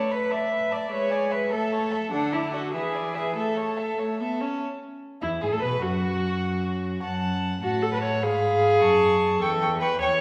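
Cheerful and spirited, this fragment of a quick classical-period string quartet movement in 6/8 at 100 BPM moves from A major to E major at 4.6 s, with two dark, nasal gut-strung violins carrying the melody and a second line, a smooth-topped viola sitting up front in the accompaniment, and a reedy cello with light vibrato anchoring the bass, all bowed in period style and heard from further back in a reverberant recital hall.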